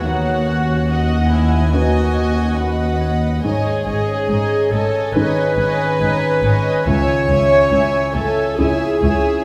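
A cinematic passage in C# minor opens with the full ensemble at once, moving freely around 70 BPM with a longing, moving mood, as a dark, woody violin section with light vibrato carries the melody over a floating, soft-attack second violin line and a rich, up-front viola section, all three bowed sul tasto. A mellow baby grand piano with long sustain and a concert harp ringing its arpeggios in the background fill out the middle, while sul tasto cellos and distant, lush double basses hold the bass until 9.1 seconds. The harmony moves from Badd9/D# through G#sus4 to C#m, set in a wet scoring-stage reverb, before the excerpt cuts off at 9.4 seconds.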